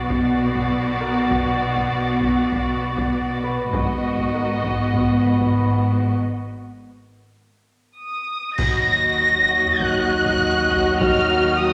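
Cinematic suspense film score at 99 BPM in 4/4, uneasy and tense and cut from a longer piece, where veiled con sordino strings lead, with a muted chamber violin section up front on the vibrato melody, a lush symphonic violin section on the second line, smooth-topped violas in accompaniment, and cellos and double basses in the background on the bass, while a close, dry taiko ensemble struck with hard sticks plays underneath and a mellow, ringing, thumb-plucked harp adds texture from 1.0 s; after a break at 6.2 s, a band accent at 8.6 s lands in Eb minor as a dark, roomy French horn section and a tight, bright trombone section enter on sustained chords and clash cymbals with concert bass drum strike briefly, in a wet scoring-stage reverb.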